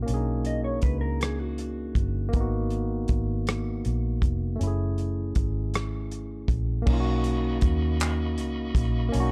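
A dusky, small-room production frames this tender, slow six-eight R&B fragment in B major at 53 BPM, where a barky, amp-driven tine electric piano moves through Bmaj9, G#m9 and F#m9 over a round, foam-muted fingered bass and a gritty, saturated soul kit of tight kick, rim click, hi-hat, handclaps and rolled-off crash cymbal, while a mellow, clean electric guitar adds a second line from 0.5 to 2.3 seconds and a reedy, lightly overdriven tonewheel organ with key click and fast rotary speaker enters with sustained chords at 6.9 seconds.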